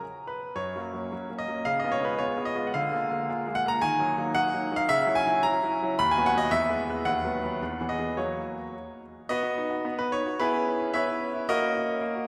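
Playful and cheerful, this fragment of a classical-period piano sonatina moves at 111 BPM in a straight 2/4, starting in F# major and shifting to B major at 4.9 s. A solo grand piano carries it from start to finish, brilliant and intimate in tone, with long sustain and audible action noise placed up front, spanning D#2 to B5. The piano rings out in a wet church reverb with a 3.5-second decay, and a new section begins at 9.3 s on a B chord.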